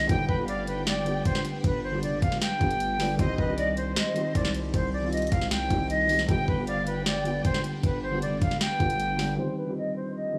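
A lightly reverberant studio sound frames this eerie, menacing trap excerpt in C harmonic minor, moving at 155 BPM with a half-time feel over a G to C minor progression. An airy, close-miked concert flute carries the melody up front through a low-pass filter and analog delay, while a muted, boxy felt piano accompanies beneath it and a very quiet granular cloud pad hovers in blurred, evolving chords. A distant, lush violin section with vibrato and portamento adds a second line until 7.8 seconds, the saturated, aggressive 808-style bass and the knocking trap kit with sharp snare and bright hats drop out near 9.4 seconds, and a filter sweep closes the final second.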